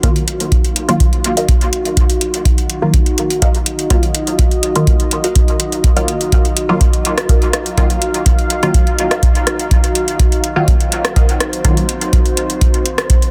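Cavernous and hazy, this dub techno excerpt rests on a moody, detuned ambient pad holding an Ebmadd9 chord with chorus and a sidechain pump, while a muted sawtooth chord stab sweeps through its filter under phaser, tape grit and dub echo, a very quiet plucked stab riff enters at 1.4 seconds, and a deep, up-front electronic kick plays alongside a booming analog drum machine with metallic hats, rim clicks and a softly clipped snare, all in a dense, heavily limited modern mix with light digital ambience.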